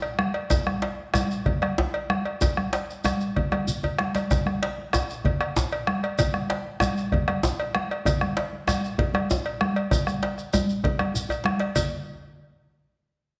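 A metallic cowbell opens this driving, powerful West African drum ensemble passage. Moments later the bombo, congas, djembe and shekere join. The groove sits in a straight 12/8 at 128 BPM counted in dotted quarters, and it keeps speeding up throughout the recording. The deep, dark bombo sits up front, close and dry. Bright, thin-skinned congas and a medium-tuned djembe struck with hard hands sound alongside it, while the grainy, mellow shekere carries a live-room feel. Drum fills break in at 3.5 seconds and again at 11.1 seconds, leading into a short new section near the close of this cut from a longer piece. The whole ensemble is wrapped in a wet echo-chamber reverb with small-room ambience.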